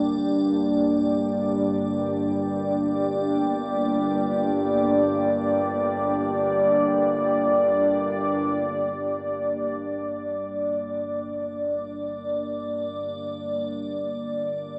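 Floating in free time, this ominous, unsettling dark ambient drone in G minor rests on a single G minor chord, heard as an excerpt cut from a longer piece. A deep, moody pad with detuned sawtooth unison and a sub octave holds sustained chords up front, fading out over the first 9.0 seconds, while an evolving, wave-folded analog drone with pulse-width modulation sits low beneath it and an icy, crystalline glass pad with a noise layer and moving notch shimmers on a high D5. The whole is bathed in a cavernous cathedral reverb, yet carries the murky, boxy character of cassette tape played through a small speaker.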